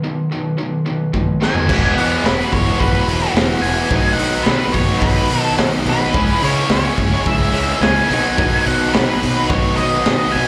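A raw garage drum kit sits up front, its punchy kick and high-tuned snare gritty and saturated with a rolled-off top, entering with a fill at 1.1 s in this swaggering, driving classic rock passage heard live through a club PA. Two electric guitars play riffs in the background from the start: one overdriven and lo-fi with slapback echo, the other bright and tightly distorted. A dark octave-fuzz lead guitar carries the melody from 1.4 s, and at 1.7 s a punchy fuzzed bass and a thick, barely audible tonewheel organ with slow rotary speaker join as the chords move through Esus2, B and C#m, within moderate club reverb and club ambience.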